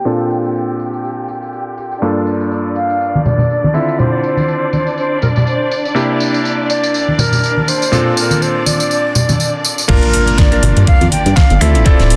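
A breathy, hollow silver concert flute carries the melody from 2.8 seconds, its vibrato and tongued notes sitting close and trailed by tape echo in this groovy, cosmic nu-disco excerpt at 122 BPM in G dorian, with a light 16th-note swing. Beneath it, a bright, cutting electric grand piano plays the accompaniment with a clangy low end, slapback echo and sidechain pumping, while a lush symphonic string section holds sustained chords with expressive portamento under a filter sweep. A produced pop drum kit with a fat snare, metallic hats, finger snaps, tambourine and crash drives the groove, joined by soft-handed, vintage congas. The chords move through Bbmaj7, Gm7, Dm7 and C7 before a drop at 9.9 seconds brings in a thumpy, sampler-style electronic kick, a very quiet impact and a glossy, dark chorused synth bass that sits up front and pumps with the sidechain. The dense, heavily limited master carries light reverb and a low-pass filter.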